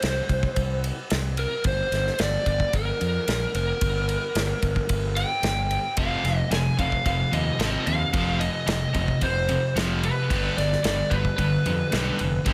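A straight 4/4 hard rock pulse at 111 BPM drives this aggressive, heavy excerpt. A boomy kick, medium-tuned snare and ride from a big acoustic kit sit up front alongside a growly, punchy fuzz bass, while an overdriven lead guitar through a small cranked amp carries the melody with a touch of plate reverb over a progression moving from Gm to F7(no3) and G. At 6.0 seconds two riff guitars join, one bright and scooped with high-gain distortion, the other dark and sludgy in the background, thickening the low end in a light room.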